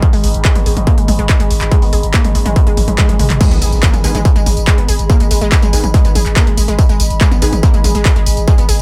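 Driving peak-time techno in G# minor at 142 BPM, this dark, relentless excerpt from a longer piece sits on a single G# minor chord in straight 4/4. A layered, distorted, overdriven kick sits up front alongside a punchy, tape-warm analog drum machine re-recorded in a small room that supplies crash, handclaps, hi-hat, tambourine and toms, while a growling, buzzy 808-style bass pumps under sidechain and a low-pass filter. A bright, wave-folded unison pluck riff with tube saturation and tape echo runs from 0.1 seconds, over a warbly, nostalgic lo-fi pad with chorus and reverb, and a very quiet, nasal drone with moving overtones sounds only through the opening. A drum fill at 2.6 seconds leads into the drop at 3.4 seconds, marked by a very quiet electronic impact. From 4.0 seconds an aggressive, thick rave stab with chorus, reverb and tape echo sits in the background, and the dry overall sound keeps the mix loud.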